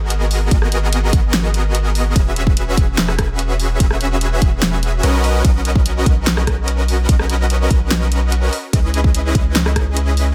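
A deep, mellow 808-style bass sits up front, its long sine tones hitting with a fast attack and then decaying, pumping against the sidechain from the very start. Above it, huge supersaw chords spread a lush, airy wash of detuned sawtooth voices with a bright noise layer, pulsing with the same sidechain pumping and trailing off into dub echo. A layered pop kit enters at 0.1 seconds, its fat snare, rim clicks, hi-hat and ride cymbal re-recorded in a small room, and a punchy electronic kick joins at 0.5 seconds. The harmony drifts through G#m9, E69, Bmaj9 and C#m9 over a half-time groove, giving this future bass fragment, cut from a longer piece, a dreamy, emotional glow. The mix stays close and dry, with little reverb.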